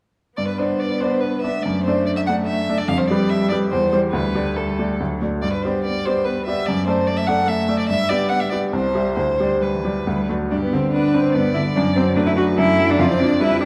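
Lively and cheerful, this excerpt from a quick classical-period movement for piano trio moves at 144 BPM in 3/4 with a rubato feel, in G major, built on chords like G, D/F#, G7/F and C/E. A smooth, even violin carries the melody with vibrato and sits up front, while a focused cello with vibrato plays the second line, both with a rich tone. A brilliant baby grand piano supplies a bright, long-sustained accompaniment, all set in a recital hall reverb with a dark production, and the opening passage returns at 10.5 seconds.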